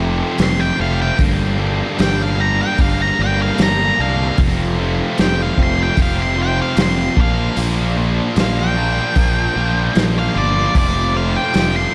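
A dark, fuzzy octave-fuzz lead guitar carries the melody high over a gritty, brooding blues rock and southern rock power-trio excerpt at a straight 75 BPM in 4/4, entering at 0.4 s alongside a muffled, lo-fi vintage drum kit with a tight kick and a medium-tuned snare, while a double-tracked, up-front overdriven electric guitar riff with slapback echo and a growly, overdriven fuzz bass drive the F, Gm, F, Bb, F progression from the start, all set in a lush hall reverb that gives a big arena sound.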